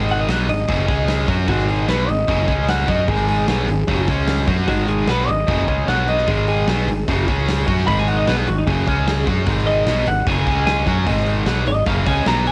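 A home cassette recording with light small-room reverb carries this anthemic, swaggering hard rock excerpt at 150 BPM, where a bright, double-tracked overdriven guitar riff and a growly fuzz bass sit up front beneath a dark, slightly broken-up, compressed lead guitar soloing throughout, propelled by a natural, big-room arena drum kit with a punchy kick and medium-tuned snare.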